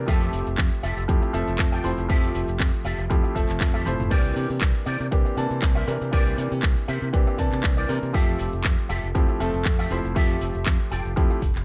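A sunny, groovy nu-disco excerpt in F major opens with a warm grand piano and a bright, direct fingered electric bass, with drums and an envelope-filtered guitar arriving at 0.1 seconds. The tempo sits at 119 BPM in 4/4 with a light swing on the sixteenths, and the harmony moves from Fmaj9 to C9 at 4.1 seconds and back to Fmaj9 at 8.1 seconds. A punchy, tape-toned electronic kick leads the beat, supported by a layered house kit of cracking snare, metallic hi-hats, handclaps, cabasa, crash and toms, both re-recorded in a small room. A drum fill arrives at 3.6 seconds, leading into the chord change. The twangy, clean picked guitar riff sits high and soft in the mix with ensemble chorus and tape echo, while the piano accompaniment carries its own tape echo, all in a dry, close space with little reverb.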